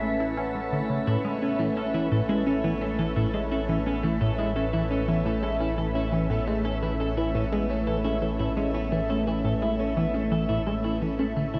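Cosmic and expansive, this ambient fragment, cut from a longer piece, drifts in a straight 4/4 over a single Aadd9 chord. A mellow, airy silver concert flute opens with a brief, very quiet vibrato phrase that ends at 1.1 s, when a clean, twangy electric guitar enters with bright picked arpeggios touched by tape echo. Up front, a swirling, evolving analog pad holds detuned sawtooth chords with phaser and chorus, while a tight sequenced synth drives a filter-plucked riff through chorus, phaser and tape echo. Beneath them a round sine sub bass sustains a deep low A, and a pulsing, tempo-synced triangle texture glimmers in the background through its own reverb. The whole mix sits in a wet shimmer reverb with a 9.1-second tail and the worn, warbling pitch drift of old cassette tape.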